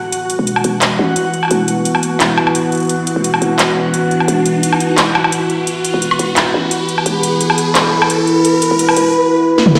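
A half-time drum and bass groove with a light swing on the sixteenths drives this cinematic, heavy excerpt, cut from a longer piece and built entirely as a build-up. The electronic, layered drum kit sits up front with a cracking snare, metallic hats, handclaps, toms and woodblock, carrying a tape-warm tone from being re-recorded in a small room, and it closes with a fill at 9.6 seconds. A deep, moody ambient pad holds sustained sawtooth-and-sine chords with a sub octave, slow attack, chorus and its own reverb, while a filter sweep runs across it for the whole passage. Beneath it, a growling, buzzy 808-style bass gives fast-attack, decaying notes through a high-pass filter, and a reversed, dreamy texture of detuned, granular triangle tones adds a bright, swelling shimmer. An electronic riser enters at 0.3 seconds to heighten the tension, and the whole mix rings through a moderate echo-chamber reverb, as if played on a big sound system in a bare stone room.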